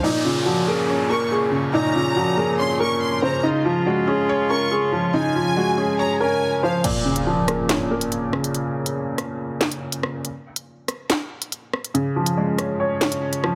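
Tense and ominous, this half-time drill hip hop excerpt in Bb minor at 141 BPM opens with a boxy, long-sustaining grand piano melody over a lush, vibrato-rich violin section with tape echo, soft-attack classical brass chords in the background, a thin-felt upright piano accompaniment through a low-pass filter, and an electronic downlifter; then at 6.8 seconds an impact lands as the grand piano, violins and brass stop, the upright piano's filter sweeps, and an up-front electronic drum kit with a sharp snare, crisp hi-hats, handclaps, rim clicks and crash cymbal drives the break, the mix heavily compressed for a radio sound with light studio reverb.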